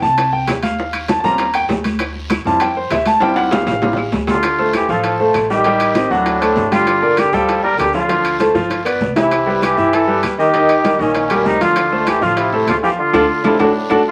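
A clear, intimate baby grand piano leads this driving, fiery Afro-Cuban jazz excerpt, its short-sustained chords carrying audible action noise over a woody, thumpy pizzicato upright bass. High-tuned congas, round low bongos, ringing saturated metal-shelled timbales, dry claves and a raspy guiro fill the percussion bed. At 4.3 seconds a vintage-toned flugelhorn with vibrato takes the melody up front while a punchy, forceful trombone sounds distant and roomy on a second line, and a band accent at 13.0 seconds arrives through moderate reverb and vinyl crackle.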